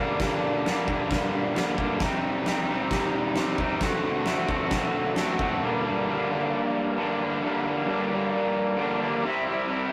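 A rough rehearsal-room recording with moderate studio reverb frames this raw, swaggering garage rock excerpt at 133 BPM, where a bright, overdriven, double-tracked electric guitar sits up front playing a picked riff over Gm, Cm and D7 while an oversized, low-tuned acoustic drum kit with a boomy kick, fat snare, crash cymbal and a gritty, saturated, pumping big-room sound plays beneath it until 5.5 s, leaving the guitar alone as the music settles into G dorian and moves toward C.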